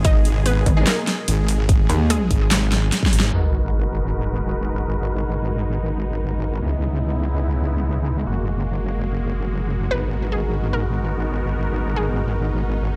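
A chaotic, menacing heavy wobble dubstep drop in G# minor opens at 146 BPM in a half-time feel, with a punchy electronic kick, a big-room kit with a huge snare, metallic hats and handclaps, and a saturated, detuned sawtooth wobble bass pushed up front beneath lush supersaw chords and a gritty 12-bit unison pluck melody, while a metallic FM wobble bass snarls briefly and a bold orchestra-hit-like stab flashes in the background at 0.8 seconds. After a drum fill, the kick drops out at 3.1 seconds, and the kit and pluck fall away at 3.3 seconds as a sub drop hits and a filter sweeps across the pumping supersaw chords, moving from G#m7 through C#m7 and F#add9 over the heavy wobble bass. The pluck melody returns at 9.9 seconds, all within a dark production with light reverb.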